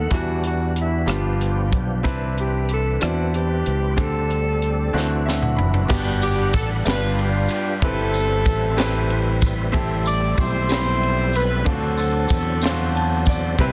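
Uplifting and reverent, this slow gospel passage in 6/8 moves at 62 BPM in G major, its breathy, distant alto saxophone singing the opening melody with vibrato and scooped notes until 5.6 s over a brilliant grand piano, a gritty, overdriven tonewheel organ with fast rotary speaker and chorus vibrato in the background, a round, up-front fingered electric bass, and a polished fusion drum kit with a punchy kick and high-tuned snare. Drums and piano fill before a punchy horn section with tape echo takes over the melody at 6.2 s, joined by a jingly tambourine, as chords such as Cmaj9, D9 and Gmaj7 carry the harmony. Light reverb and small room ambience sit under a dense, heavily limited modern master in this excerpt cut from a longer piece.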